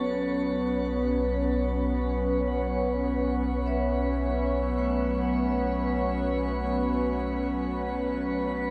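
A warbly, nostalgic tape-like pad with chorus and phaser holds sustained Bsus2 chords up front in this spacious, serene ambient piece at 76 BPM, over a round, deep analog bass that fades out and a detuned, evolving analog drone on B3, while a metallic, ringing vibraphone with slow motor vibrato and delay fades in with arpeggios from 2.5 s, all bathed in a wet shimmer reverb.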